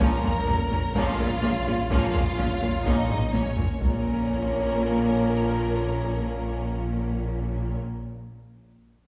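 A vast, futuristic stretch of hybrid orchestral and electronic film score opens on a full Bb minor chord, with a taiko ensemble pounding heavy sticks in the background of a live room beneath bowed strings. A lush, rich violin section carries the melody with smooth vibrato, shadowed by a second violin line that has a soft attack and expressive tone, while violas fill in the accompaniment from a distance. Cellos and double basses anchor the low end alongside a deep, thick, saturated sine sub bass. Very quiet sustained chords come from a mellow French horn section, a bright, tight trombone section and a dark, moody sawtooth pad treated with chorus and phaser. The taiko drums play a fill from 3.1 to 3.8 seconds and drop out at 4.7 seconds, leaving the strings, brass, pad and sub bass to hold the chord through 7.8 seconds. The whole mix sits back in a scoring-stage reverb, lending it a spacious, cinematic depth.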